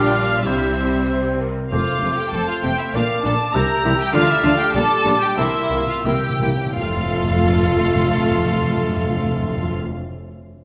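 Bathed in a wet scoring-stage reverb, this brief passage cut from a spirited, cheerful classical-period orchestral movement in F major moves in a quick, rubato 2/4 at 82-101 BPM, with a distant, focused violin section carrying the melody over second lines from a pure silver flute, a gently vibrato oboe, a dark background clarinet and softer background violins, while lush, very quiet violas accompany, mellow horns hold sustained chords, expressive cellos with portamento join close double basses on the bass, and calf-headed timpani played with medium mallets enter at 0.5 seconds and return with a fill from 5.4 seconds as the music slows before settling on an F chord at 6.8 seconds.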